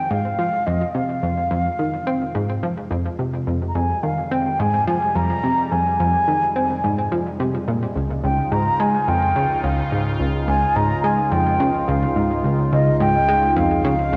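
A straight 4/4 pulse at 107 BPM drives this expansive, cosmic stretch of sequencer-driven space music in F minor, cut from a longer piece. A punchy, funky analog bass riff enters at 0.1 seconds, its sawtooth and square-wave tone shaped by a fast-attack filter pluck that decays, sitting up front with lush chorus and delay. Alongside it, a detuned, evolving synth pad sustains chords from Fm to Dbadd9 at 8.0 seconds, fading in across the whole passage with a slow attack, resonant filter swell, chorus and bright shimmer. Over the top, a breathy, mellow concert flute carries the melody between Eb5 and Bb5 with vibrato, a crisp attack, rolled-off highs and expressive delay. A concert-hall reverb with a 2.0-second tail bathes the mix, while worn cassette tape adds a warbling pitch drift.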